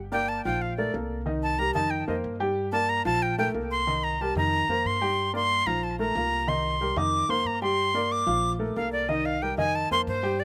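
A dry sound with little reverb and an open-air feel frames this short cut from a longer sultry, driving Afro-Cuban jazz piece at 184 BPM in a straight 4/4. A breathy, bright flute sits up front and solos throughout, its reedy, tongued lines carrying vibrato, while a warm baby grand piano with short sustain comps alongside it. A woody pizzicato upright bass anchors the low end as the band cycles through Gm7, Bb5, Cm7 and F9sus4.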